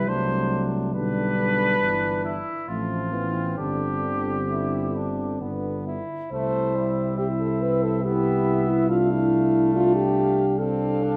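A mellow French horn with a smooth top leads the ear in this stately, triumphant excerpt for classical brass quintet in 3/4, its rubato phrasing giving the beats an uneven, breathing lilt. Above it a distant trumpet carries the melody with light vibrato and a roomy flugelhorn traces a second line, while a close-miked trombone, also with light vibrato, fills the middle and a dark, punchy tuba anchors the bass up front. All five play throughout the 11.2 seconds in a reverberant recital hall, with the harmony resting on G before the second section opens on C at 6.3 s.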